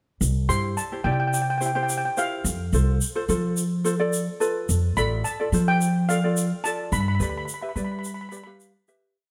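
Close, detailed miking with light reverb gives this short, carefree calypso piece an intimate, bouncy feel, with a fade-out beginning at 6.9 seconds. A shimmering steel pan, struck with hard rubber sticks and set in a boxy small room, carries a free, unrepeating melody up front, while a mellow, fingerpicked ukulele picks light, rhythmic triad chords through C, F, Dm and G. Underneath, a woody, thumpy pizzicato upright bass plays a syncopated figure, and a grainy, compressed tube shaker adds a saturated, bright pulse.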